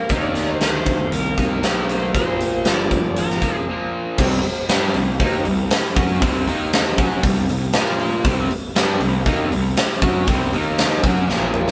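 Recorded live in one room with light reverb, this gritty excerpt of blues rock and southern rock has the full, immediate sound of a power trio, with a huge arena drum kit sitting up front. It moves at a straight 118 BPM in 4/4 in C minor, tuned slightly below standard pitch, and the mood is brooding. A bright, double-tracked semi-hollow guitar drives the riff throughout, while a growly fuzz bass, picked and overdriven, holds down the low end under chords that move among Eb5, Bb, Cm, C5 and Bb5 before reaching F#5 at the close. Over the opening, a warm slide guitar carries the melody until 3.6 seconds, just before a short break at 3.7 seconds leads into the second section. The natural, big-room kit, with its punchy kick, medium-tuned snare, hi-hat, crash and toms, finishes with a drum fill at 11.3 seconds.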